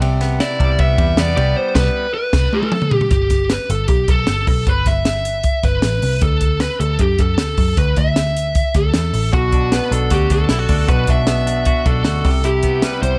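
Vinyl crackle and small-room ambience frame this breezy, nostalgic jangly indie pop excerpt, where an up-front, overdriven lead guitar carries the melody from 0.4 seconds over a round, foam-muted picked bass and a dry cocktail drum kit with punchy kick, high-tuned snare and dark cymbals, while a bright, twangy clean electric guitar plays arpeggios at the start and returns at 9.3 seconds, and the band hits an accent capped by a drum fill that ends at 3.1 seconds.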